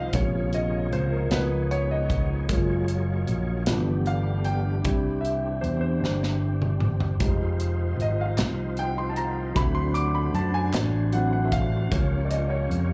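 A present grand piano with slapback echo leads this soulful, fervent slow gospel excerpt in 6/8, over thick, lightly overdriven tonewheel organ with key click and slow rotary speaker, very quiet mellow French horns, a punchy amped fingered bass and an up-front studio drum kit with a tight kick and a fill at 6.0 seconds, while hollow group handclaps join from 8.4 to 11.1 seconds, all caught as a live club gig through the venue's PA.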